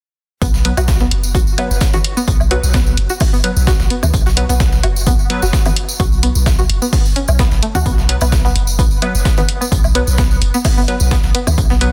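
This minimal techno excerpt has a dense, heavily limited modern sound with very little reverb, and its mood is clinical yet quirky. A dry, punchy electronic kick and a dry analog hi-hat sit up front, joined by a gritty, overdriven sampler-style kit of hi-hat, snare and tambourine, while a separate jingly acoustic tambourine, plus layered woodblock and congas with dub echo entering at about 0.8 seconds, fill out the groove. Underneath, a deep sine sub bass with a pitch-drop attack pumps through sidechain compression. The riff comes from a twangy, warbling, string-like resonator pluck with a noisy, vintage edge, shaped by chorus, phaser, a filter sweep and dub echo. Crisp, detuned wavetable chord stabs with phaser and dub echo add a digital sheen over a B5 chord, and the whole passage holds one steady section until it ends at 11.9 seconds.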